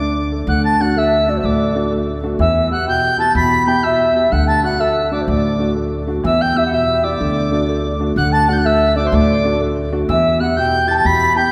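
A lively, bright Celtic polka in swung two opens at once on a mellow, hollow wooden flute carrying the tongued melody with vibrato, over a chiffy, straight-toned whistle high above on a second line. Beneath them a clear grand piano with deep bass gives natural accompaniment, and a thumpy, gut-strung upright bass is plucked low, as the harmony moves between D and E minor through a repeated strain. The ensemble rings in the wet reverb of a church, and the passage is cut from a longer piece, breaking off at 11.5 seconds.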